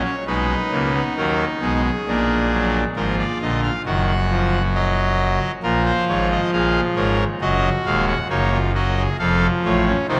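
A pipe organ sounding its trumpet stop opens the recording, playing solo and up front with a brassy, bright, baroque voicing. It's a classical, baroque-style four-part fugue in Eb minor at 67 BPM in a straight 4/4, with a mood that is driving yet contemplative. The organ spans from Eb1 up to Gb5, filling the texture from deep bass to the upper register across the whole 10.2 seconds. The harmony moves steadily through Abm/Cb, Bb, Ebm/Gb, Bbm and Ebm, arriving on F at 9.2 seconds. The sound is drenched in a cathedral reverb with a 6.6-second decay, placing the instrument in a vast, echoing space, and the passage is cut from a longer piece.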